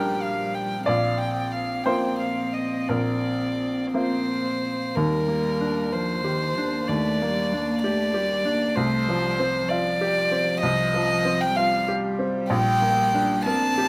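Neoclassical piano and strings in a tender, hopeful 6/8 with a rubato sway: an intimate solo violin, played sul tasto with an airy bow and light vibrato, carries the melody up front; a close, softly attacked cello sings a second line beneath; and a bright, brilliant baby grand piano with short sustain supplies the accompaniment from the bass register upward, all through a moderate studio reverb as the harmony moves from Gm/Bb through Ebmaj7 and Csus4 and back, in this fragment cut from a longer piece.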